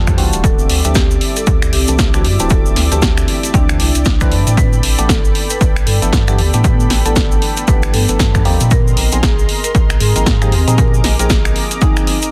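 A swung sixteenth-note groove in 4/4 drives this late-night deep house piece, where an up-front overdriven electronic kick and a punchy analog drum machine with finger snaps, hi-hat and snare sit over a grainy cabasa, a full sine-and-triangle sub bass with octave, hollow, nasal organ stabs with chorus and tape echo, a hard-mallet marimba melody through digital delay, a smooth detuned pad holding D9sus4, A9sus4 and Bb9sus4 chords, and an ethereal pad drifting in the background, with sidechain pumping on the bass, stabs and both pads under a dense, heavily limited master dusted with vinyl crackle.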